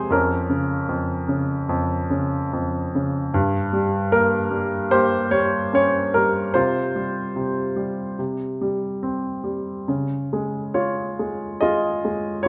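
A classical piece for lyrical solo piano, this brief excerpt from a longer work carries a reflective, dark mood. It moves at about 74 BPM in 4/4, though the beats are uneven and the phrasing breathes with rubato. A baby grand piano plays alone throughout the 12.5 seconds, its tone clear and present, placed up front and spanning F2 to Eb5. The harmony passes from Bbm/F through Gdim and Csus4 to C5, arriving on Db at 9.9 seconds. A moderate recital hall reverb gives the instrument a sense of space.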